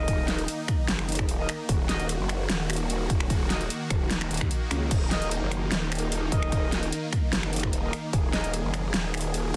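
Aggressive and heavy, this short excerpt of wobble dubstep moves at 149 BPM in a half-time feel, in Eb minor. A growling, detuned growl bass sits up front in the low register, its saturated, wobbling tone thickened with chorus and overdrive and shaped by a formant filter. Above it, huge supersaw chords sustain across the whole passage with a moving notch and sidechain pumping, while a dark brass ensemble in the background delivers classical-style stabs coloured by vintage 12-bit sampler grit and digital delay until 8.5 seconds. The drum kit brings a massive snare, metallic hats, finger snaps and crash cymbal, and a punchy, tape-warm electronic kick drives the groove but drops out briefly at 4.5 seconds. Light reverb surrounds a dense, heavily limited modern master.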